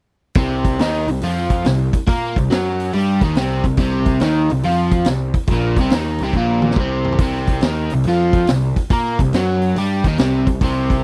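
A crunchy, double-tracked overdriven guitar riff sits up front in this gritty, smoky blues rock power-trio excerpt with a southern rock lean, swinging at 141 BPM in C minor over a bright, growly fuzz bass and a saturated vintage drum kit with a punchy kick, a high-tuned snare and a rolled-off top that breaks into a fill at 6.3 seconds, set in a dry, close 1970s-style studio sound.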